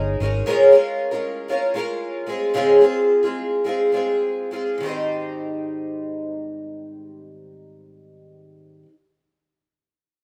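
A double-tracked, picked twelve-string acoustic guitar opens this sunny, carefree pop excerpt in Ab major, its woody, shimmering, octave-doubled tone sitting up front in a rough home demo mix with light reverb. The tempo falls between 100 and 117 BPM with a lightly swung 4/4 feel, easing down from 0.5 to 4.8 seconds as the guitar moves from Bbm7/Ab to Dbmaj7/Ab before settling on Abmaj7. Its warm, boxy tone carries the sound of old strings until the guitar stops at 8.9 seconds.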